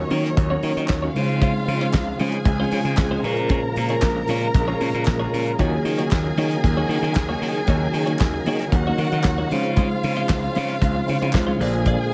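Lightly reverberant studio ambience frames this sultry, driving disco excerpt in Eb dorian at 115 BPM, where a dry, up-front 70s drum kit with a fat snare and tight kick and a growly, overdriven slap bass push beneath a gritty organ spun through a fast rotary speaker and chorus vibrato, a clean semi-hollow guitar touched with spring reverb, a mellow tine electric piano, crisp group handclaps from 0.9 s, and a lush, distant bowed violin section singing a second line over Ebm7, Dbmaj7 and Bbm7 before landing on Bb7 at 11.6 s.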